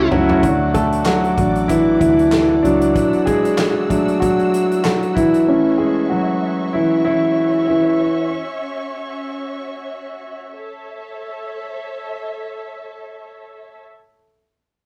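Swung sixteenths in 4/4 open this hopeful, anthemic piano-driven pop fragment with a brief fill on a natural country kit of punchy kick, medium-tuned snare, hi-hat, toms and handclaps that plays until 5.5 seconds, while a dark, round, foam-muted vintage electric bass drops out at 2.9 seconds, the clear, intimate concert grand, with audible action noise and long sustain, sits up front in a featured solo, and lush bowed strings with vibrato and portamento hold sustained chords through 13.8 seconds, the rough rehearsal-room sound carrying reverb and saturation.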